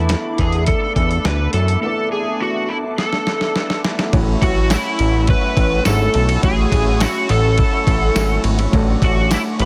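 An overdriven slide guitar carries the dark, up-front melody from the start, bathed in analog chorus and plate reverb, over a fat, detuned sawtooth bass, a worn, woody upright piano with audible action noise, a slightly broken-up lo-fi electric guitar with warbly pitch drift, and a hollow, flute-like pad in the background. In this hazy, nostalgic indie and bedroom pop excerpt, a gritty, compressed sampler-style drum kit with a thumpy kick enters at 0.1 seconds, and a break leads into a drum fill at 3.0 seconds. A jingly tambourine joins in the background at 4.7 seconds as the chords move from E7sus4 to A6 and Dmaj7/A, all sealed in a dense, heavily limited master.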